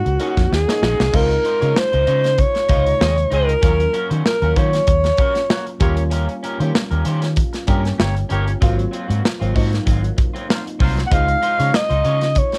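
A lightly swung sixteenth-note groove from an airy, punchy studio drum kit, with a fill at 0.5 seconds, and a round, foam-muted fingered bass drives this upbeat, glossy 1980s jazz-funk pop piece, where a breathy, intimate alto saxophone with scooped notes carries the melody over glassy, bell-like FM electric piano with phaser and subtle chorus, a dark, slightly broken-up picked guitar riff, and a clear horn section with light vibrato playing a second line from 3.0 to 11.0 seconds, captured dry as a home cassette recording.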